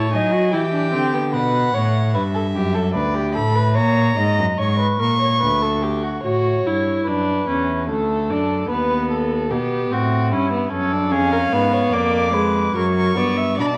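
Joyful yet stately, this baroque-style fugue for string quartet in triple time unfolds in a period manner, as a fragment cut from a longer piece. The first violin carries the melody high above the ensemble with light vibrato and a gut-string sheen, falling silent at 6.2 seconds and returning at 11.1 seconds. Beneath it, the second violin spins a nasal, distant counterline throughout. The viola sits up front with a smooth top, sounding briefly at the opening, then resting from 1.3 seconds until the second section begins at 6.2 seconds. The cello anchors the bass with a dark, reedy tone, close and present from start to finish, while a moderate recital-hall reverb surrounds the quartet and the whole recording carries the worn, warbling pitch drift of old cassette tape.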